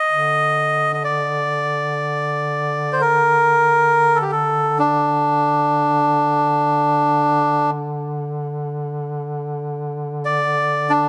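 Mournful and full of longing, this short passage cut from a longer piece is a Caucasian folk lament played in free time. A melodica carries the melody from the very start, ranging from D4 to Eb5, its reedy, breathy tone sitting up front with a dark, smooth edge and the nasal color of its plastic case. Beneath it, a duduk enters at 0.1 seconds and holds a low drone on D3, set much quieter in the mix. The duduk's tone is warm with vibrato in a folk style, heard distant and roomy behind the melody. Close, detailed microphones and light reverb frame the pair, and both parts sound through to the end at 11.1 seconds.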